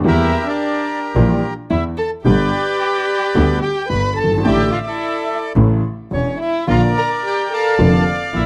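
A reedy, up-front bandoneon carries the melody in this tense, dramatic tango fragment, moving rubato at 109 BPM in 4/4 with tuning at A4 = 444 Hz, over chords that shift from Edim through G, Asus4 and A to Bb. Beneath it, a dark bowed violin sings a smooth, expressive second line with vibrato and portamento, while a worn, boxy grand piano with audible action noise and short sustain plays close-up accompaniment. A biting, intense bowed double bass sits more distant in the bass, all in a dry, close 1970s-style studio sound that lasts about 8.5 seconds.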